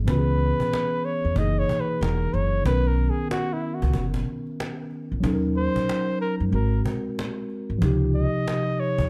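Mellow and nocturnal, this jazz-hop excerpt swings its sixteenths inside a small room ambience, with a woody, pizzicato upright bass thumping up front beneath a clean, direct tine electric piano. A warm flugelhorn takes the solo throughout, its soft attack, scooped notes and light vibrato carried by a slapback echo. A distant cajon struck with hard hands adds faint snares underneath.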